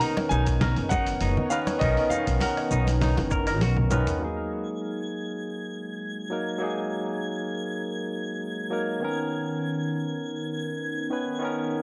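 Sunset chillout in a sunny, blissful mood, where a dark, mellow baby grand piano melody, twangy clean electric guitar arpeggios, hard-handed congas, a woody pizzicato upright bass, a thumpy electronic kick and a dusty soul sampler-style kit with cabasa, woodblock and toms fall away by 4.2 seconds after a short drum fill, leaving a barky tine electric piano up front and a thick, warbling unison pad to carry on as a twinkling granular shimmer enters at 4.7 seconds, all heard through a dry, gritty cassette-tape sound with light reverb.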